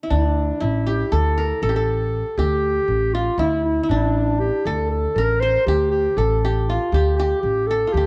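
This is a Turkish makam ensemble piece in 9/8 with a straight feel, a brief fragment cut from a longer work, and its mood is soulful and hypnotic. The qanun carries the melody from the very start at 0.0 seconds, its triple strings plucked with fingerpicks for a tone with a gleaming edge, sitting a little further back than the other two parts. At 0.1 seconds a mellow clarinet joins with a second line in the same middle register, played in a classical style and placed present and up front like a soloist. An acoustic upright bass enters at the same moment, played pizzicato on steel strings, giving a woody, warm low foundation that also sits up front. The three parts carry on together through a single section until 8.1 seconds. Light reverb surrounds the group, and the sound has the character of a home recording on cassette.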